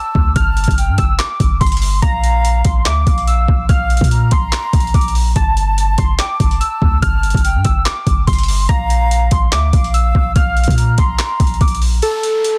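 Trap-leaning hip hop at 144 BPM in a half-time 4/4 feel, this melancholic, hard-hitting excerpt puts warbly, detuned lo-fi synth keys on the nostalgic melody, coloured by chorus, low-pass filtering and tape echo, while an airy concert flute with a soft attack traces an expressive second line. A deep, boomy 808-style bass joins a gritty, overdriven boom bap sampler-style kit with a thumpy kick, handclaps and hi-hat, the kit sitting up front in a dry, dense, heavily limited mix as the harmony moves between Gsus2 and Bb5. At 12.0 seconds the kick is muted and an electronic downlifter carries the piece to its cut at 12.6 seconds.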